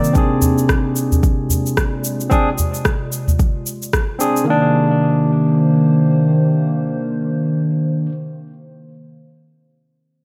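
A barky tine electric piano sits up front in this meditative organic downtempo piece in C minor. Its bright, lightly overdriven tone comes through a combo amp with delay and sidechain pumping as it carries the accompaniment. Alongside it, a warbling, nostalgic tape-like pad holds sustained chords with a slow attack and long release, its lo-fi, detuned character coloured by chorus, phaser and built-in reverb. A ringing Celtic harp plays arpeggios with delay in the background until 2.6 seconds, while a close udu adds deep acoustic percussion. An overdriven, up-front electronic kick and an electronic shaker and rim click set a 111 BPM groove in 4/4 with swung sixteenths, and the drums stop by 4.5 seconds as the harmony moves from Bb7/C to Cm7. A wet recital hall reverb gives the recording a warm, spacious setting.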